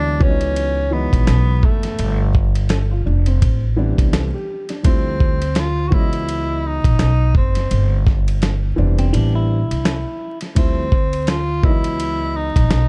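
A breathy tenor saxophone carries the melody from the opening moment over a mellow, dark grand piano and a woody, thumpy pizzicato upright bass, setting a nocturnal, late-night jazz-hop mood at a relaxed 84 BPM in 4/4 with a swung sixteenth-note feel. At 0.2 seconds a gritty, compressed, sampler-style soul drum kit joins with hi-hat, ride cymbal, a medium-tuned snare and a thumpy kick, sitting up front alongside the bass with a small-room character. The saxophone plays in a jazz style with vibrato, soft attacks and scooped notes, its top end smooth, while the vintage-sounding piano moves through lush extended harmonies such as C#m11, Am11, Dm11 and G7sus4. During a brief break a clean, fingered electric guitar adds a quiet second line from 9.0 to 10.4 seconds. Studio reverb, vinyl crackle and a dusky, warm production give this fragment of a longer piece its hazy, after-hours atmosphere.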